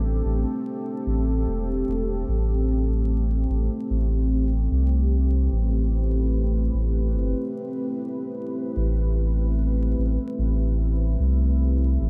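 A deep, moody ambient pad of detuned sawtooth and sine voices holds a single Am11 chord from the start, its warbling chorus and built-in reverb lending a vintage darkness, while a soft, round sub bass with tube saturation sits up front beneath it. This spacious, meditative ambient dub passage, cut from a longer piece, moves at 74 BPM in 4/4 with a gentle 16th-note swing in A minor. An echo chamber reverb with a 1.8 s decay and a layer of vinyl crackle frame the 12.1-second excerpt.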